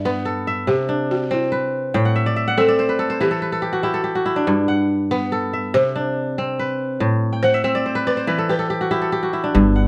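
Hypnotic and flowing, this West African traditional excerpt in 12/8 is carried by a ringing, crisp kora whose fingerpicked arpeggios sit up front, adding fills from 1.9 and 7.3 seconds. A woody, buzzing balafon played with soft rubber mallets takes the lead melody as a solo, its boxy tone touched by plate reverb within a moderate studio ambience, over chords cycling through G, C and A minor with brief chordless moments. A thumpy pizzicato upright bass on gut strings arrives only at 9.5 seconds, just as the passage breaks off.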